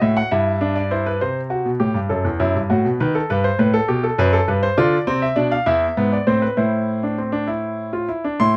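A clear, natural grand piano sits up front in light reverb, playing a stately yet joyful baroque-style three-part fugue in a straight 6/8 across a span from E2 to C6, with the harmony moving through the dominant before settling on A minor at 6.6 s in this short passage cut from a longer piece.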